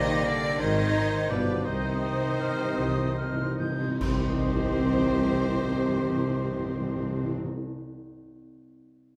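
A lush symphonic violin section carries the melody of this bittersweet, dark orchestral ballroom waltz in C minor from the very start, over a flexible, rubato 3/4 pulse moving between 133 and 187 BPM. Around it, a pure flute, a soft-edged cor anglais, a clear clarinet and an expressive chamber violin section add inner lines, while a mellow bassoon, a faint viola section, a hushed dark French horn section and a ringing fingerpicked harp fill in the harmony. A smooth cello section holds the bass, joined in the low end by a sombre tuba and a distant double bass section at 0.6 seconds. The music slows from 1.1 seconds as articulate, up-front timpani play a fill alongside bright cymbals and concert bass drum, leading to a full-band accent at 4.0 seconds, all set in a moderate recital hall reverb.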